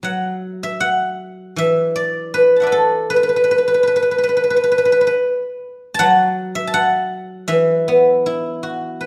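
A solo guzheng, plucked with fingerpicks, sits up front with a silvery, ringing tone, spanning from its low register to high notes across the nine-second excerpt. In a traditional Chinese style, the playing moves in free, rubato time with a flowing, pastoral mood. Light reverb adds a touch of space around the instrument's bright acoustic sound.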